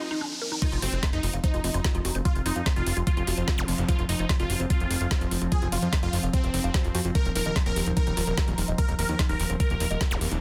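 Psychedelic trance at 147 BPM, driving and alien, where a riser gives way at 0.6 seconds to a drop led by an overdriven, knocking electronic kick up front, a garage kit with a woody snare and metallic hats, and a fat, saturated sawtooth bass with a filter sweep, while a punchy detuned supersaw stab carries the melody through phaser, cassette tape and digital delay, a dark wave-folded pluck riff sits in the background, and an evolving, warbling wavetable pad holds chords beneath, the stab, pluck and pad all pumping to the sidechain in a dense, heavily limited modern master.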